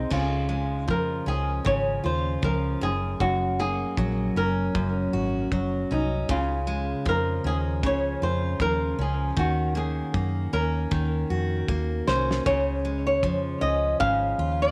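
Acoustic pop with a tender, wistful mood, this short cut from a longer piece moves at an unhurried pace with a gentle swing. A fingerpicked flamenco guitar carries the melody up front, its tone touched with audible finger squeak and a tape echo that trails each phrase. Beneath it, a picked steel-string dreadnought guitar fills out the accompaniment with a warm, close presence, while a vintage foam-muted electric bass, amped and round with tube saturation, holds down the low end. A cloth-damped drum kit gives a thuddy, rolled-off feel, with a fat snare, tight kick and dark cymbals, and a drum fill arrives at 11.7 seconds before the return to Db at 12.5 seconds. The harmony drifts from Db through Gb and Ebm7, and the whole sits in a small room with light reverb.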